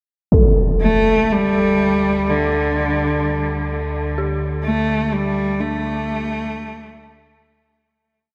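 A huge, bright impact and a pure, meditative quartz singing bowl holding a high note open this vast, ominous dark ambient drone piece at 62 BPM, joined at 0.8 s by a rich, distant bowed cello with delay singing a free vibrato melody over a deep, rumbling, warbling drone that fades in, while an eerie, inharmonic detuned synth bell with chorus and delay enters at 4.2 s in two slow loops drifting against each other, bowl and bell fading out inside a long ambient reverb.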